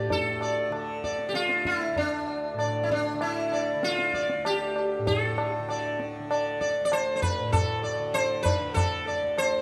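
A steady, straight four-beat pulse from the tabla joins at 0.1 s, its low-tuned drums ringing with the closeness of a small room. This is a fragment of a longer Hindustani classical performance in raga kafi, carrying a longing, solemn mood. Up front from the very start, the sitar carries the melody, its plectrum-plucked tone buzzing and alive with sympathetic strings, and a touch of tape echo trails its phrases. Beneath it, the tanpura holds a softly plucked drone in a low register, bright and shimmering. A moderate recital hall reverb gives the ensemble a spacious, resonant setting.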